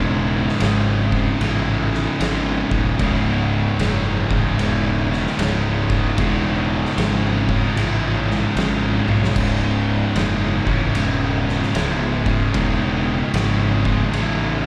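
A growly, bright fuzz bass sits up front as three picked guitars grind out a brooding, ominous C# minor riff in swung 4/4 stoner and doom metal at 75 BPM: a double-tracked overdriven guitar in the background and two thick fuzz guitars, one of them carrying extra distortion and slapback echo. At 0.5 s an oversized low-tuned kit joins with a boomy kick, fat snare and dark cymbals, playing a fill at 9.0 s, and the whole passage is heard as a live club gig through the venue's PA.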